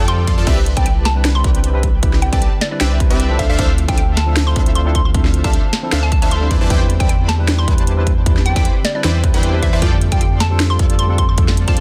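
Lush and bright, this future bass excerpt in C major moves at 154 BPM with a lightly swung half-time feel, as a hollow, bouncy square-wave pluck carries the melody through chorus, cassette tape coloring, delay and sidechain pumping over a soft, airy pad, a detuned supersaw stab riff and a thick, saturated sub bass, while a trap kit with a sharp snare, metallic hi-hats and crash joins at 0.1 s, a punchy, up-front electronic kick lands at 0.3 s, and a barky tine electric piano slips into the background at 0.5 s, the dry, dense, heavily limited mix cycling through Cmaj9, Dm7, Am11/E and F69.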